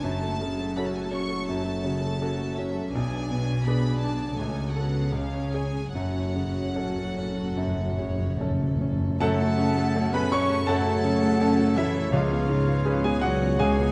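A clear, intimate grand piano carries the melody up front from the start, with audible action noise, over floating sul tasto violin sections, dark woody violas and a rich cello and double bass foundation in this brooding, tragic romantic movement for piano and orchestra in F# minor, moving with rubato at around 71-84 BPM. Close, dry timpani enter at 4.4 seconds and add a fill before the orchestra thickens at 9.2 seconds, where a dark cor anglais and an airy, hollow flute add second lines in the background, mellow French horns and faint trombones hold sustained chords, and a tight trumpet section adds quiet stabs. A distant, mellow clarinet joins at 10.7 seconds as the harmony turns toward C#7, all within a moderate scoring-stage reverb in this excerpt cut from a longer piece.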